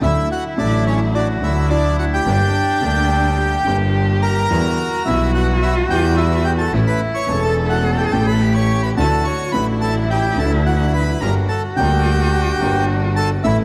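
Moderate concert-hall reverb surrounds the recording, with the bandoneon and double bass up front, the cello distant and the string section very quiet. This is a passionate, playful tango in D major at 107 BPM in 4/4, played with a rubato feel, and this 13.6-second passage is cut from a longer piece. The close-miked, dry bandoneon carries the melody from C#4 to C#6 in a dark, reedy, full tone, while a single bowed double bass anchors the bass with a rich gut-string sound, light vibrato and a period-style character. A lone bowed cello adds a second line with vibrato, soft attacks, portamento and expressive phrasing, and a vintage grand piano supplies warm accompaniment. The clear symphonic string section contributes bowed ensemble stabs with an intense, smooth top. The harmony moves through Dadd9, Gm, Em and A before returning to Dadd9 and Gm.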